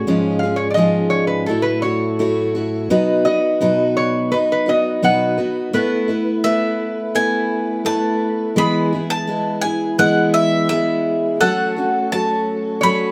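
A lap resonator guitar leads the opening of this nostalgic, pastoral acoustic folk excerpt, its metallic, nasal slide tone taking a solo with a steel bar and fingerpicks from 0.0 to 5.7 seconds before settling into a second line. Underneath, a picked steel-string dreadnought supplies full-bodied accompaniment at an unhurried 85 BPM in a straight 4/4 feel. A round, dark tonewheel organ holds sustained chords in the background, with vibrato, a touch of key click and a slow rotary speaker. At 6.4 seconds a bowl-back mandolin enters up front with the melody, its bright double strings picked high in the register. The chords move from C#/G# through F#m7/A and B, then on to Asus2, E and F#m, all set in a wet small room heard from further back.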